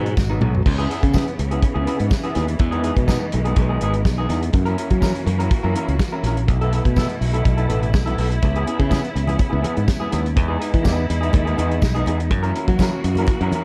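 A bright, growly fingered electric bass sits up front in this sultry, danceable disco excerpt at 124 BPM in C# minor, beside a soul drum kit with a tight kick, medium-tuned snare and rolled-off top that opens with a fill at 0.2 seconds. A slightly broken-up, lo-fi electric guitar through a small old amp plays accompaniment, while a lush, bowed string section holds smooth sustained chords with vibrato over a progression that moves through C#m7, Emaj7 and F#7. Very quiet, thick-skinned congas return at 8.4 seconds, and a distant, jingly tambourine sits in the background of this dark, dry production.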